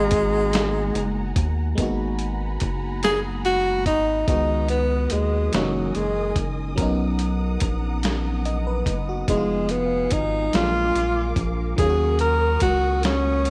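Late-night and sultry, this slow six-eight R&B piece, cut from a longer work, moves at an unhurried straight pulse under light digital reverb. A breathy tenor saxophone carries the melody up front, close-miked with a soft subtone and vibrato and touched with slapback echo, and from 1.8 seconds it takes a solo in a jazz style. Beneath it, a glassy FM electric piano with a bell-like attack and chorus supplies the accompaniment, while a dark, lush string section holds bowed chords with expressive vibrato and a smooth top. A rubbery, hollow square-wave bass with a bouncy filter pluck sits up front in the low end, and from 0.1 seconds a dusty, sampler-style soul drum kit adds hi-hat, a thumpy kick and a medium-tuned snare, gritty, overdriven and re-recorded in a small room. The harmony drifts through rich extended chords, opening on G#m9 and settling on D#m7 at 11.8 seconds.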